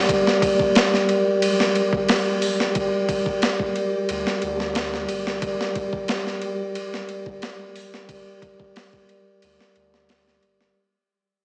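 A brooding, cinematic trip hop excerpt in G minor at 90 BPM opens on a mellow, ringing vibraphone played with soft mallets, colored by harmonic tremolo and tape echo, over a round sine sub bass sitting deep in the background, while a gritty, compressed boom bap kit with a thumpy kick, high-tuned snare, hi-hat and ride sits up front and a very quiet grainy, flickering texture drifts in at 0.3 seconds, all held on a G minor chord through a fade-out that runs from 0.1 seconds to the end, with light reverb and a small-speaker sound.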